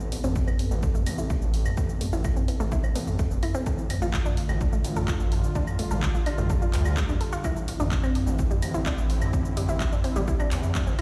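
A bright, airy pad drifts behind a gritty, saturated synth bass and a house drum kit of claves, handclaps, shaker, toms and warm hats, all three pumping against the sidechain, as this dark, cinematic melodic techno fragment in A minor opens at 127 BPM. A round, detuned analog pluck enters at 0.2 seconds with arpeggios washed in chorus and delay under a filter sweep, and a punchy, layered electronic kick joins at 0.4 seconds, while the chords move from Amadd9 through Dm/A to Cadd9/A. The whole sounds as if played on a big sound system in a bare stone room, closing on a band accent at 10.8 seconds.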